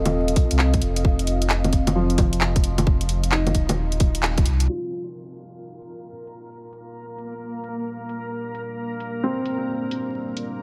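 A soft, felt-muted upright piano sits at the heart of this rainy, melancholic future garage fragment, its mellow, intimate chords carrying audible action noise through a low-pass filter, delay and sidechain pumping. Beneath it a deep, moody pad holds sustained, detuned chords with warbling chorus and reverb. A round sine sub bass and a tight electronic kick sit up front in G minor at 132 BPM, with 16th notes swung at 64%. A tape-tinged garage kit of bongos, handclaps and hi-hat plays throughout in a small room, and the band lands an accent at 4.2 seconds. At 4.7 seconds the harmony moves from F7 to Gm7, the bass and kick have dropped away, and filter sweeps move across the pad and piano; from 5.8 seconds a reversed, granular texture swells in, bright and dreamy, while vinyl crackle and light reverb color the whole mix.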